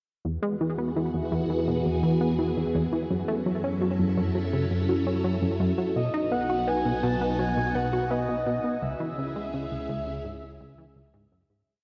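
A plucky, punchy analog bass drives this expansive, hypnotic piece of sequencer-driven space music at 84 BPM, its repeating 16-step sequence up front and trailed by tape echo, while a swirling phased string machine holds bright sustained chords from Eadd9 through F#m7, B and C#m over a chorused analog drone. At 6.0 seconds a breathy, flute-like synth lead enters with arch-shaped motif phrases, vibrato and lush chorus. The whole piece sits in a huge reverb with a worn, warbling cassette drift, and it fades out from 7.9 seconds.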